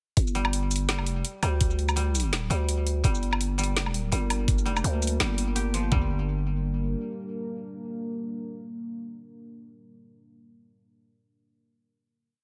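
A heavy, dark half-time drum and bass miniature in G minor at 167 BPM, set in a digital ambience with overdriven drums pressed up front. From 0.2 seconds the drop hits: a knocking kick and floor tom carry the half-time pulse, while a sparse layer of woody snare, bright closed hats, shaker and low woodblock adds a loose, swung feel. A growling, buzzy 808-style bass with a fast attack and decaying tail sits up front, playing chopped phrases between G1 and D2. Above it, a mellow, dry koto played with fingerpicks repeats a six-step arpeggio loop that drifts against the bar, trailed by delay. At 3.6 seconds a deep, warbling ambient pad enters with a vintage sawtooth-and-sine character and sub octave, breathing with sidechain pumping and chorus. Once the beat falls away, the final chord arrives at 5.9 seconds: the pad sustains it while the koto keeps arpeggiating and the bass lingers until 7 seconds, and the pad fades out at 9.6 seconds.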